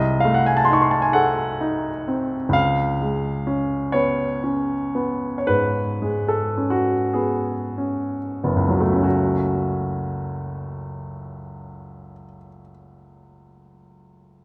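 The rhythm moves in a free, rubato 4/4 at a very slow 30-46 BPM, and the pulse gradually slows down over the first 9.0 seconds. This is a romantic classical nocturne in F# minor for solo piano, wistful and melancholic in mood, cut from a longer piece. A clear, polished baby grand sits up front and present throughout, spanning a range from F#1 to C#6. The harmony moves from a Cdim7 chord to C#7, then settles onto F# minor as a new section begins at 9.0 seconds and carries through to 14.4 seconds. A moderate concert hall reverb with a 2.2-second decay surrounds the piano with a sense of space and lingering resonance.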